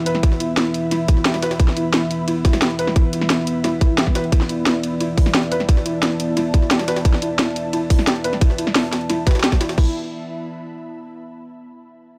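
Dark technical drum and bass at 176 BPM in 4/4, mechanical and futuristic in mood, cut from a longer piece with a dark, warm production and light reverb. A tight, up-front electronic kick anchors the groove alongside a layered drum and bass kit with a cracking snare, hi-hat and crash cymbal, while a gritty, pitched-up jungle sampler-style kit sits in the background, overdriven and compressed, its high-tuned snare, hats and ride thinned by high-pass filtering. A deep, nasal analog pad holds sustained chords from E3 to E5 with detuned square and sawtooth tones, a sub octave, chorus and sidechain pumping. A felt-muted upright piano plays soft, intimate arpeggios between E4 and B4, shaped by a low-pass filter sweep and digital delay and also pumping with the kick. An ethereal, airy pad with a noise layer, ensemble chorus and its own reverb drifts through the whole passage, lingering alone after the drums, piano and analog pad stop near 9.9 seconds until the end at 11.1 seconds.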